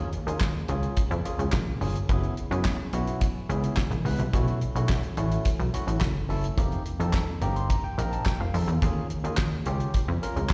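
Smooth and danceable, this early-eighties boogie funk excerpt moves at 107 BPM in a straight 4/4, cut from a longer piece. A plucky analog bass sits up front from the start, punchy and funky with a fast-attack filter pluck that decays, its tone blending sawtooth, square, sine and wave-folded colours in a low register. A damped 70s acoustic drum kit enters at 0.1 seconds, dry, warm and up front with a fat snare, tight kick, hi-hat and handclaps, its top rolled off and touched by a slapback echo. A barky tine electric piano carries the accompaniment, bright and lightly overdriven through a combo amp, with plate reverb and slapback echo, and it breaks into a fill from 7.1 to 8.8 seconds. The harmony glides through lush suspended ninth chords, opening on Eb9sus4 and moving through Gb9sus4, B9sus4 and F9sus4 before returning home. The sound is that of a live gig heard through the venue's PA, carried by the reverb of a recital hall.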